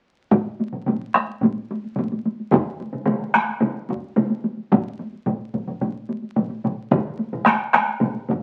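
Layered taiko drums struck with hard and heavy sticks sit close and up front in this ceremonial, powerful Japanese traditional excerpt at 109 BPM in a straight 4/4, with three drum parts sounding from 0.3 s, one of them ringing in a live room, and a fourth, close and dry, joining at 2.5 s, all heard through wet studio reverb and the crackle of a very old 78 rpm record.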